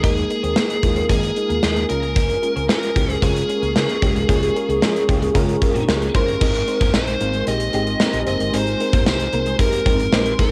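This nostalgic, uplifting excerpt of 1980s-style pop in Ab major at 113 BPM, in straight 4/4, opens with the full band at once. Up front, a gated drum kit in a bright stone room drives it with a punchy kick, medium-tuned snare, hi-hat, tambourine and crash cymbal. A dark, round, foam-muted fingered bass sits beneath. A lush, dreamy FM electric piano with a soft pad layer carries the accompaniment through chorus and phaser, while a very quiet, twangy twelve-string electric guitar picks a clean riff. Behind them, a granular cloud pad holds blurred, evolving chords with its own reverb. Up front, an overdriven, biting lead guitar leads the melody as the harmony moves from Ebsus4 through Bbm7/Db before landing on Abadd9 at 6.4 seconds, set in light studio ambience with the hazy tone of a home cassette recording.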